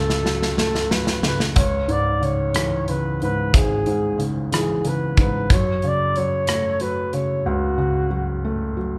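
Aching and melancholic, this short excerpt from a longer six-eight pop ballad in F# minor moves at a slow 61 beats per minute, counted in dotted quarters with a straight feel. A drum fill opens the passage as the modern studio kit enters at 0.1 seconds, its punchy kick, medium-tuned snare, rim click and hi-hat sounding acoustic and up front, with a rolled-off top. Alongside it, a felt-muted upright piano carries the accompaniment in a low register, soft and intimate, with audible action noise that gives it a natural, close presence. A mellow flugelhorn sings the melody in a classical style, its vibrato heard from a distant, roomy position. The harmony shifts from F#m to C#m at 1.6 seconds and returns to F#m at 5.5 seconds, with the band playing live together in a large studio space with moderate reverb.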